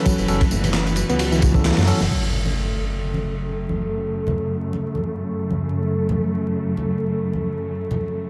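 Vinyl crackle, light reverb and small room ambience frame this gritty, funky breakbeat cut at 132 BPM in 4/4, with a 16th-note swing in F# minor. A crunchy acoustic kit sits up front with a punchy kick, medium-tuned snare, hi-hat and dark ride cymbal under a rolled-off top, joined by layered, tape-warm electronic tambourine and handclaps and soft-handed, saturated congas in the background. A swirling, thick phased saw bass in unison detune carries the low end, while a reedy, worn and slightly out-of-tune electric piano plays an overdriven riff with tremolo, 12-bit grit and tape echo, dotted with clean tine electric piano stabs. A dark, bowed string section with light vibrato and a soft attack holds sustained chords throughout, pumping to the sidechain through a low-pass filter and sampler grit. After a band accent, most parts stop at 2.1 seconds as an electronic impact hits. From there, the strings continue under a filter sweep until 8.3 seconds, with the congas carrying on until 8.0 seconds.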